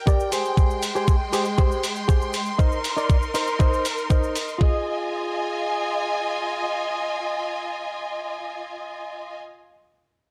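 A bright, intense string section opens the piece with bowed, vibrato-rich sustained chords that pump against a sidechain, setting a sensual, sleek nu-disco mood at 119 BPM in F minor. A direct-recorded clean electric guitar joins almost at once with a twangy, picked riff, coated in lush chorus and analog delay, while a filter sweep runs over it through the opening bars and a short fill closes that stretch just before 4.6 seconds. Underneath, a thumpy, up-front electronic kick drives a straight 4/4 pulse, joined by a compressed, overdriven hi-hat with a gritty, sampler-style bite and a cabasa sitting quietly in the background. The harmony moves from Abmaj7 to Cm7 before settling on Fm7, and the drums and percussion drop out around 4.7 seconds, leaving strings and guitar to carry on together until about 9.4 seconds. A light reverb and a dry, cassette-tape hardware character give the whole mix a slightly dusty edge, and this short passage is cut from a longer piece.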